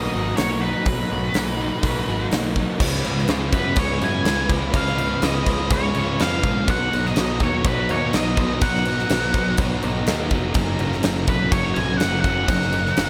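Shoegaze and dream pop rock in B lydian at 124 BPM, blissful and wistful, cut from a longer piece, where a dark octave-fuzz lead guitar carries the melody through distortion and analog delay over a thick fuzz guitar riff with analog chorus, an overdriven semi-hollow guitar riff wrapped in reverse reverb, very quiet lo-fi arpeggios from a slightly broken-up guitar through a small old amp, a growly picked bass, distant sustained chords from a roomy brass ensemble, and a huge arena drum kit with a punchy kick and bright cymbals that enters at 0.4 seconds, all moving from Bmaj7 through C#7 and back to Bmaj7 before a closing F#6 under light reverb.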